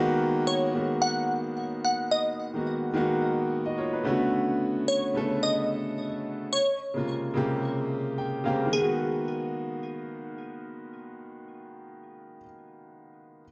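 A warm concert grand piano, boxy and up front with audible action noise, deep bass and long sustain, carries the chords from G#m9 through Bm9 and A#m9 in this deep, hypnotic amapiano excerpt at 109 BPM with a light 16th-note swing, breaking into a fill at 7.9 seconds, while a glassy, crystalline wavetable pluck, detuned and bright with a filter sweep, chorus and tape echo, plays the melody from 0.5 to 12.4 seconds in a small, softly reverberant room.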